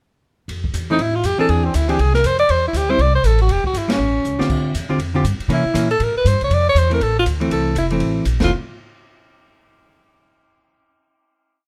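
Relaxed and warm, this short small-group swing and bop piece opens at 0.5 seconds with a woody upright bass walking beneath a smooth acoustic drum kit that keeps a ride cymbal pattern over a boomy kick, before a clear alto saxophone, with light vibrato, soft attack and scooped notes in plate reverb, states a bebop-style theme at 0.9 seconds over the syncopated three- and four-note comping of a clean hollow-body guitar, the band striking an accent at 3.9 seconds ahead of a drum fill and closing on a final hit.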